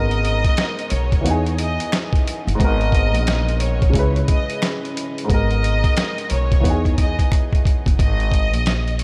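A swung boom-bap groove at 89 BPM in G# minor sets a gritty, dark mood, with a compressed, pitched-down sampler-style drum kit pushing a thumpy kick and medium-tuned snare up front, punctuated by a drum fill from 6.6 to 8.0 seconds, while barely audible finger snaps sit close in a short room. A pizzicato upright bass with woody gut strings anchors the low end up front, and a worn, slightly detuned upright piano with a cassette-tape tint carries chords such as G#madd9, Emaj7 and C#m7 until it stops at 8.0 seconds. Above them, a rich studio violin section holds a focused, bowed melody with vibrato and a smooth top, bathed in diffuse ambient delay, all set in a small room with light reverb in this brief cut from a longer piece.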